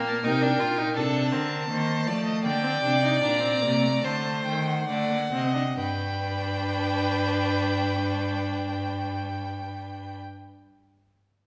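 Heard in a reverberant recital hall or church, this short passage cut from a longer baroque-style fugue for string quartet feels contemplative and serious, and it slows down over its first 5.8 seconds before settling onto a G major chord. Two violins, rich, smooth and set at a distance, carry the melody and a second line, playing evenly with vibrato. Beneath them a clear, focused viola supplies accompaniment and an up-front cello with a smooth top holds the bass, all four bowed by single players throughout.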